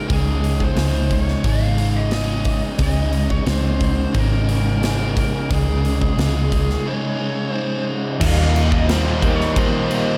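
Shoegaze-leaning dream pop rock at 89 BPM in a straight 4/4, this dreamy, blissful cut from a longer piece sets a fuzz lead guitar singing its melody through distortion and analog delay over riffs from a crunchy overdriven guitar tucked in the background with reverse reverb and a hollow-bodied overdriven semi-hollow guitar bathed in lush chorus, while a dark, round, foam-muted electric bass and a big acoustic kit with punchy kick, medium-tuned snare and bright cymbals drive the Dbsus2 groove through a break at 6.9 seconds before shifting to Eb at 8.2 seconds, all soaked in a church-like reverb.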